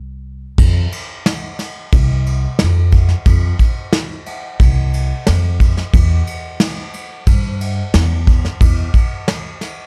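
A woody, plucked upright bass with steel strings opens this wistful, stirring indie folk excerpt at 90 BPM, joined at 0.6 seconds by an airy, polished brush drum kit with dark cymbals, a tight kick and a medium-tuned snare, both sitting up front in a dry, dark, warm production.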